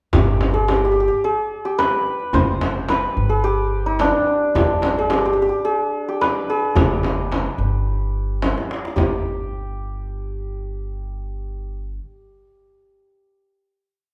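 A hammered santur leads this passionate, stately Persian modal piece in G chahargah at 109 BPM, its mellow, shimmering tone ringing up front through an ornamented melody. Pizzicato upright bass with woody, dark gut strings sits up front beneath it, thumping on the low drum strokes. A deep, large frame drum up front and a tight tombak in the background play low and high stroke patterns with a distant, roomy sound, and after a drum fill at 8.4 seconds the percussion stops at 9.2 seconds, leaving santur and bass to hold the final note as the live band sound settles in wet studio reverb.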